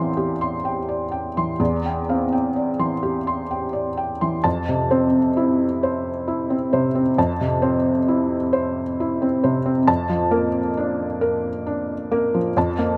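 Moving in a slow, flexible 6/8 at roughly 41-45 beats per minute, counted in dotted quarters, this short passage from a longer piece breathes freely with rubato. It is neoclassical minimalist piano in F major, peaceful and quietly hopeful in mood. A single felt-muted upright piano carries everything on its own, ranging from E2 up to C6, its tone soft, mellow and intimate, with the thin felt giving each note a hushed, natural character. The harmony opens on Cadd9/E, then settles onto Fmaj7 at 4.5 seconds as a new section begins, and moves to Bbmaj7/F at 9.9 seconds. Close, detailed microphones place the piano up front, while a light reverb adds just a touch of space around it.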